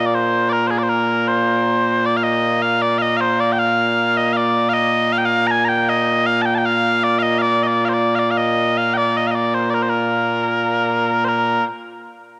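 A mellow, sweet set of small bagpipes plays alone and up front in this ceremonial, stirring excerpt of Scottish traditional pipe music, a continuous, vibrato-touched line at 78 BPM in 2/4 in Bb major, heard through a cassette home recording and a lush hall reverb.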